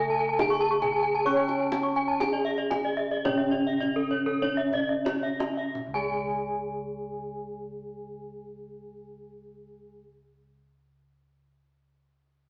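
Cut from a longer piece, this brilliant, shimmering Balinese gamelan passage in C# pelog opens with a mellow, boxy, padded-mallet bronze metallophone carrying the melody up front, a dark, smooth wooden-mallet metallophone on the low accompaniment, two bright horn-mallet metallophones spinning arpeggios with the beating of paired tuning, one airy and the other mid-forward, and round, soft bossed gongs beneath. A tight, saturated kendang joins at 0.4 s and plays a fill from 4.4 s as the 4/4 tempo, ranging from 42 to 76 BPM, slows into a new section at 5.7 s, all heard through wet large-studio reverb with a small-speaker sound.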